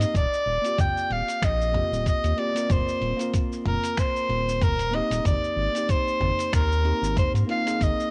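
A light reverb and digital ambience wrap this home cassette recording, a short excerpt of blissful, smooth sunset chillout in Eb major at 94 BPM with a 16th-note swing, where an edgy soprano saxophone with light vibrato carries the melody up front through cassette tape and analog delay, over a clean tine electric piano, a round, deep analog bass, a dusty, gritty sampler-style kit of cabasa, finger snaps, hi-hat and toms, and a thumpy electronic kick, as the chords move from Eb69 to Abmaj7 at 5.3 seconds.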